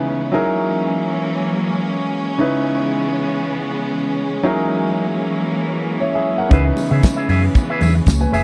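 Disco in C# dorian at 116 BPM, this glamorous, sultry excerpt from a longer piece opens with a smooth, vintage grand piano and a lush, bowed string section holding sustained chords, both up front and carrying vibrato in the strings. The harmony moves between F#13 and C#m7, changing roughly every two seconds. At 6.5 seconds the groove arrives: a damped 70s drum kit with a fat snare and tight kick sits prominently in the mix, joined by a dark, round hollow-body short-scale bass played with the fingers and a bright, twangy electric guitar picked clean through an envelope filter. Congas, high-tuned and distant as if in a large room, slip in at 6.8 seconds and stay in the background, alongside a jingly tambourine entering at the same moment. The recording is dry and close in a 1970s studio style, with little reverb.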